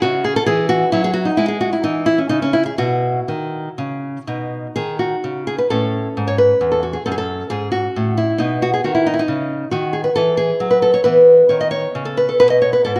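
A rubato 12/8 lilt at 89 BPM carries this flowing, radiant baroque-style classical dance for solo nylon-string guitar, cut from a longer piece. The guitar is fingerpicked up front with a warm, small tone and audible finger squeak, spanning E2 to D#5, and its harmony moves from C# minor through B to a second passage at 5.7 s that turns via A and F# minor toward E and B fifths, heard in a moderate recital-hall reverb.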